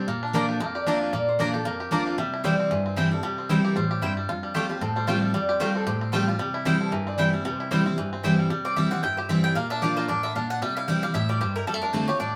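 A bright, full-bodied jumbo acoustic guitar sits up front, its picked lines and finger squeaks anchoring this joyful, rustic bluegrass piece at 228 BPM with a swung feel in C mixolydian, while a twangy, percussive fingerpicked banjo and a metallic, nasal slide resonator guitar carry the melody until the resonator stops at 8.2 s, and a woody, double-strung mandolin adds stabs before taking a solo from 8.5 s, all captured live in a small, reverberant room.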